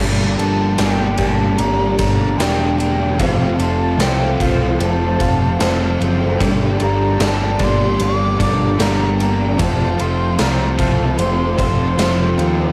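Melancholic and dreamy, this excerpt of shoegaze-tinged dream pop rock drifts at 75 BPM in a straight 4/4, alternating between Gmadd9 and F over its 12.7 seconds. A growling picked electric bass sits up front with overdrive and tube saturation, while an overdriven electric guitar plays a riff colored by subtle chorus and cassette tape grit. A very quiet, twangy twelve-string electric guitar adds a clean, compressed riff of its own, and a shimmering, octave-doubled twelve-string acoustic guitar picks arpeggios with fresh strings and audible finger squeak. From 0.4 seconds a mellow silver concert flute carries the melody with airy vibrato, its close-miked, slightly unsteady tone passed through cassette tape and tape echo, as a gated 80s drum kit brings a tight kick, medium-tuned snare and bright ride cymbal in a stone room. Beneath it all, an evolving wavetable pad enters at 0.5 seconds, holding morphing, phaser-treated chords with a slow attack and long release, and the whole home cassette recording sits in light reverb.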